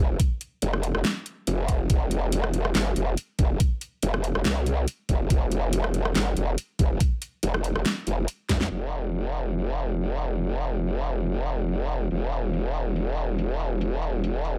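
A saturated, wobbling growl bass with chorus and overdrive anchors this aggressive, chaotic heavy wobble dubstep excerpt at 141 BPM in a swung half-time feel, driven by a knocking, tape-warm electronic kick with studio reverb until 8.6 seconds and an up-front kit of huge snare, rim click and metallic filtered hats, with a drum fill at 8.5 seconds closing the opening drop before a filter sweep on the drums shapes the final section.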